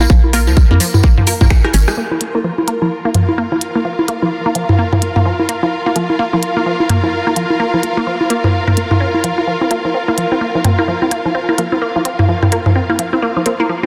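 Sparse and quirky, this minimal techno cut opens with a squelchy resonant blip pluck riff run through phaser and tape echo, a hollow, bouncy FM bass, overdriven electronic congas and toms, a jingly tambourine and a bubbling stepped-filter texture, with a tight, up-front kick joining at 0.1 seconds before a drum fill around 1.5 seconds. From 2.0 seconds the bass, kick, tambourine and bubbling texture fall away as a dark, lush bowed string section with vibrato takes the foreground, while a very quiet muted dub chord stab and a clicky minimal kit of finger snaps, hi-hat and rim click keep the groove swung. The pluck carries a filter sweep through this later stretch, and the whole sits in a lush hall reverb under a dense, heavily limited master.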